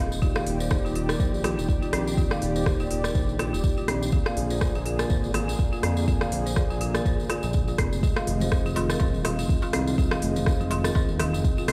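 A deep, up-front electronic kick drives this earthy, spiritual afro house at 123 BPM with a 16th-note swing in F dorian, alongside a smooth-hatted afro-pop kit with rim clicks and a jingly tambourine, while a nasal synth bass, a detuned analog pad with chorus, a woody hard-mallet marimba arpeggiating through delay and flute-like tonewheel organ stabs on fast rotary all pump against the kick over Ebmaj7, Bb7 and Fm7, before quiet congas and a crisp metal-shell darbuka enter at 8.0 and 8.2 seconds, all bathed in large studio reverb.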